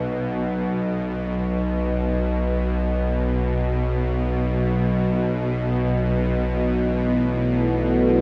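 Desolate and ominous, this dark ambient drone, cut from a longer piece, opens on a tense, string-like bowed drone with a bright, up-front sawtooth edge, ring modulation and vibrato. A Dadd9/B harmony arrives at 5.1 seconds, and at 6.7 seconds a deep, mellow pad enters with sustained chords, chorus and a sub octave beneath it. The whole sits inside a wet cathedral reverb with a 5.3-second decay.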